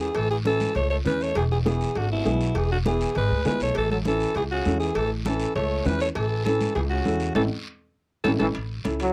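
Cumbia at a sunny, danceable 200 BPM in A major, where a raspy, gritty alto saxophone carries the melody up front with vibrato over a distant, roomy bright trombone second line, a dark, boxy, slightly detuned upright piano, a woody, growly pizzicato upright bass, and background cowbell and timbales, damped congas and a vintage guiro, all in a dry, close 1970s-style studio sound with light reverb, before a drum fill and band accent at 7.4 seconds and a brief piano fill at 8.1 seconds close this short cut.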